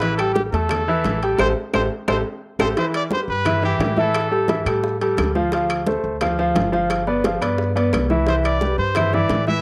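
A bright, smooth-topped trumpet with vibrato leads this fiery, danceable salsa excerpt in A minor at 174 BPM, stepping out after its opening phrase and returning at 8.3 s, while a clear, polished baby grand piano sits up front beside it, both carrying a cassette-tape grain. Beneath them, a woody pizzicato upright bass with steel strings anchors the harmony, and in the background tight, high-tuned bongos, ringing congas and woody claves keep the groove moving. Metal-shell timbales ring out in the live room, with a band accent arriving around 1.4 s and a drum fill following at 1.9 s, and the whole take has a homemade cassette character with a moderate studio reverb.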